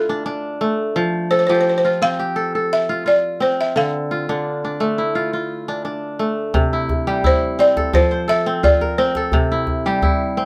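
A woody, buzzing balafon carries the melody in this short fragment of West African traditional music, struck with rubber mallets and sitting dry and up front in the mix. Beside it, a fingerpicked kora spins ringing, crisp arpeggios that run under the tune from the first moment, giving the piece a hypnotic pull in a straight 4/4. The harmony moves between Dm and F in the opening stretch, then shifts toward C and F when the second section begins at 6.5 seconds. At that point a djembe enters, played with hard hands and heard close, adding tight, cracking strokes until about 10.2 seconds. The trio sounds like a band playing live together in one room, with a moderate studio reverb lending a touch of space around the players.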